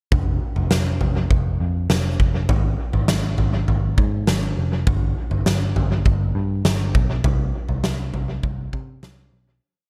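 Dream pop with a floating, dreamy mood, moving at 101 BPM in a straight 4/4 over just under ten seconds. A huge arena drum kit built from kick, snare and toms sits up front, its acoustic, big-room sound marked by a fat snare and punchy kick laying down a slow tom and kick pulse, with analog delay trailing the hits. Beneath it, a vintage muted picked electric bass plays a steady eighth-note line between F1 and C3, its tone dark, round and foam-muted through an amp. The mix is echo-heavy with light reverb. The drums stop at 9.2 seconds, and the bass carries on to 9.6 seconds as the piece fades out from 7.2 seconds.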